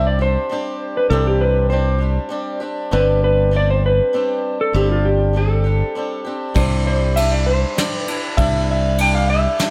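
Folk rock with a heartland rock lean, this short cut from a longer piece moves at 99 BPM in a straight 3/4 in C major, carrying an open-road, hopeful mood. A clean lap steel guitar sings the melody from the first second, its dark slide tone trailed by analog delay. Underneath, a picked swing-style acoustic guitar adds a boxy accompaniment, while a modern fingered electric bass sits up front with a bright, growly punch. At 6.6 s a soft brush drum kit enters with a fat snare, a tight kick and dark ride cymbal, all in a natural small-room sound. The harmony shifts from Cadd9 to Gsus4 and back to Cadd9, framed by light reverb and a modest room ambience.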